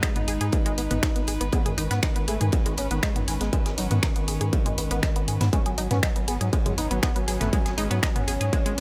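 Dramatic and cinematic, this short excerpt of melodic techno moves at 120 BPM in a straight 4/4, sitting in G# minor and shifting from G#m to Bsus2/G# at 5.5 seconds. A distorted, layered electronic kick sits up front, joined by a dry, punchy analog drum machine playing finger snaps, hi-hat and toms, while a very quiet acoustic kit adds ride cymbal and a fat snare with a small-room feel. A round, deep analog bass with tube saturation enters at 0.3 seconds, its nasal, dark tone pumping against the kick. A tight, driving sequenced synth spins sawtooth arpeggios with a filter pluck, coloured by chorus, phaser, cassette tape character and digital delay. Alongside it, a smooth, expressive sawtooth lead with soft attack and vibrato carries the melody, and a distant chamber string section holds reedy, gut-string chords in the background, roughened by vintage 12-bit sampler grit, in a dry mix with little reverb.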